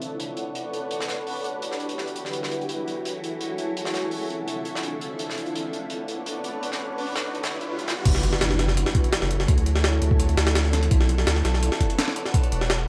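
Drum and bass in a jungle vein at 168 BPM in F# phrygian, this atmospheric, nostalgic excerpt opens with a crunchy, mid-forward acoustic breakbeat of hi-hat and snare whose rolled-off top and saturation give it a gritty, warm character, set against vinyl crackle and light reverb. A background electronic riser from 5.9 seconds leads to an impact at the drop at 8.1 seconds. There, a deep, thick sub bass ranging from E1 to D2 arrives up front with a compressed, pitched-up sampler-style jungle kit of thumpy kick, high-tuned snare, hi-hat and crash, its tape-warm sound carrying the air of a large room.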